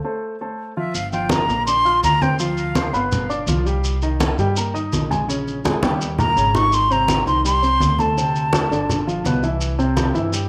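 A driving straight 4/4 pulse at 166 BPM carries this fiery Afro-Cuban jazz passage in G minor, where an intimate, up-front grand piano with audible action noise opens alone before a growly, woody pizzicato upright bass, low-tuned distant congas and grainy, band-limited maracas join at 0.9 s, and a breathy, bright concert flute with vibrato and tape echo, entering just ahead of them at 0.8 s, sings two expressive phrases, the second arriving at 6.2 s in the middle of a drum fill, the whole room bathed in a wet spring reverb.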